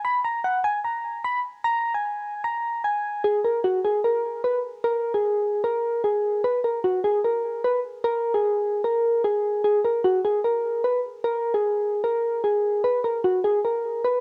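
Melancholic yet hard-hitting, this short hip hop excerpt sits at 150 BPM in 4/4 with a half-time feel. A single part carries it: soft, electric-piano-like synth keys playing alone from 0.0 to 14.2 seconds, ranging from F#4 to B5. Their tone is round and mellow, with a detuned, sine-like quality, a fast attack and decaying notes, and they sit up front in the mix. Chorus and a cassette-tape character colour the keys, in keeping with a home recording on cassette. A moderate studio reverb gives the sound some space, and the music moves from an opening section into a second one at 3.2 seconds.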